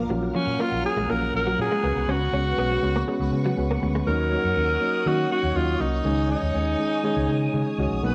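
A raspy alto saxophone carries the melody in this nostalgic, moody pop excerpt, entering at 0.4 seconds up front with a gritty edge, light vibrato and scooped notes, colored by cassette tape and tape echo. Beneath it, a foam-muted fingered electric bass sits prominently, dark, round and punchy. Gentle, warbling electric-piano-like synth keys with a full-bodied, decaying tone and chorus provide the accompaniment, while a swirling sawtooth string machine holds slow-attack chords through ensemble chorus and phaser. A clean, picked, compressed electric guitar recorded direct plays a riff in the background with chorus and tape echo, stopping at 4.0 seconds as the piece moves into a second section. The whole has the feel of a home cassette recording, with light reverb and digital ambience, over a steady straight 4/4 pulse moving through chords such as Gbmaj7/Bb, Db7sus4, Ebm7 and Dbsus2.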